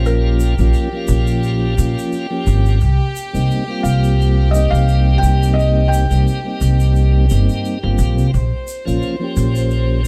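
A felt-muted upright piano with audible action noise and dub echo carries a soft melody over a piping tonewheel organ turning through a slow rotary speaker and harmonic tremolo, floating sul tasto chamber strings and an up-front, woody pizzicato upright bass in this melancholic, brooding trip hop excerpt at 87 BPM with a swung 16th feel, as a distant egg shaker enters at 0.1 s and the piano falls away at 6.5 s while the Bbm and Cm7 harmony settles into a small, dark room.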